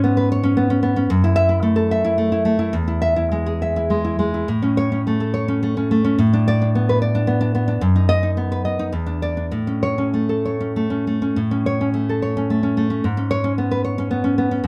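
In a flexible, rubato triple metre at around 95 to 115 BPM, this sunny and tender romantic piece for solo nylon-string guitar in A major is cut from a longer work, its dark, full-bodied fingerpicked tone sitting up front in a small room's moderate reverb as it moves through shifting harmonies before turning to a new section at 11.4 seconds.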